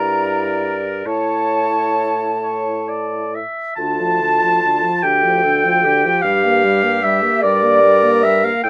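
Classical slow romantic movement for wind quintet in D minor, yearning and elegiac, moving with rubato in 6/8 at 44-50 BPM, where an airy, distant silver flute carries the melody in the background while a clear oboe with light vibrato sings the second line up front, supported by a soft-attacked French horn, a clarinet and a dark, roomy bassoon bass, the oboe, horn, clarinet and bassoon all in classical style under light reverb, in a fragment cut from a longer piece that shifts harmony at 3.8 seconds.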